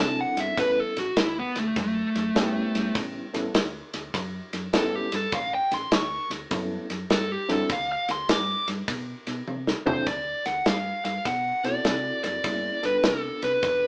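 Heard through a small speaker with moderate studio reverb from a band playing live together, this laid-back, swaggering electric blues shuffle, cut from a longer piece, features a dark, overdriven lead guitar soloing up front until 10.1 seconds, with a drum fill from 9.5 seconds leading into the next section, over a reedy, gritty electric piano with harmonic tremolo, a round, punchy hollow-body bass, and an acoustic kit of kick, snare, toms and ride cymbal.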